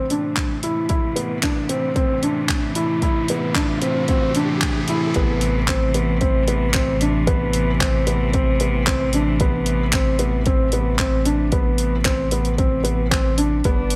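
In light reverb, this moving, cinematic piano and strings electronica excerpt in A minor at 113 BPM sets a soft, felt-muted upright piano riff, up front with audible action noise and tape echo, over sustained chords from an airy, sul tasto string quartet pumping to the sidechain, while an overdriven deep house kit of handclaps and filtered hi-hats and a deep, overdriven electronic kick play beneath a background riser from 0.5 seconds until the drop at 5.2 seconds, where a round, dark analog bass pumps in under the shift from Am to Amadd9.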